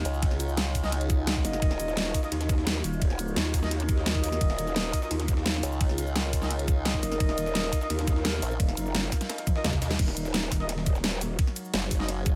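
Growl bass opens this dark technical drum and bass drop at 172 BPM in Eb minor. It is a growling, saturated, detuned beast running from 0.0 to 11.4 s with chorus and formant filtering, set up front. A formant-sweep wobble bass built from pulse and sine tones joins it, playing briefly at the start and returning from 5.6 s to the end. Underneath, a metallic, inharmonic FM drone sustains eerie chords through phaser, chorus, reverb and sidechain pumping, and a mellow, smooth-topped brass ensemble adds tight classical-style stabs with delay. The drums layer a knocking electronic kick and a produced dubstep kit with a huge snare, crash, hi-hat, cabasa and toms, plus a very quiet, gritty, pitched-up breakbeat kit with ride and snare. A drum fill at 9.5 s leads into a move from Ebmadd9 to Ebm at 10.0 s in this mechanical, futuristic excerpt cut from a longer piece.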